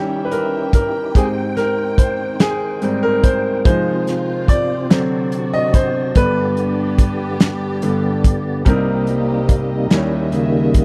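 A clear, boxy grand piano opens this slow, fervent gospel passage in 6/8 with a straight feel, soloing up front with short-sustained notes over an Eb7b9 chord. Beneath it, a dark string section holds soft-attacked, bowed chords with light vibrato and an intimate sul tasto tone, while a fat tonewheel organ sustains its own chords through a slow rotary speaker, lightly overdriven, with chorus vibrato, key click and second-harmonic percussion. At 0.3 seconds a warm soul drum kit joins on hi-hat, kick and snare, sounding acoustic and up front in a tight booth with a pumping room, a fat snare, a tight kick and a rolled-off top. The solemn harmony moves through Abmaj7, Fm7 and D7 to G before the organ takes over the solo at 8.7 seconds on a Cm7, returning to Eb7b9. A small room reverb wraps the ensemble in this short excerpt cut from a longer piece.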